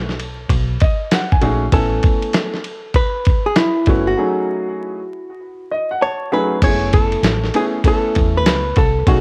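A gritty, compressed sampler-style drum kit with a thumpy kick sits up front in this cool, nocturnal jazz-hop excerpt at 98 BPM in F# dorian, swinging under a dark, clean hollow-body guitar melody with analog delay, a woody upright piano with cassette-tape colour adding fills at 0.5 and 5.4 seconds, and a round, punchy dub bass, all wrapped in light reverb and vinyl crackle, with a break at 4.2 seconds before moving to F#m11 at 6.6 seconds.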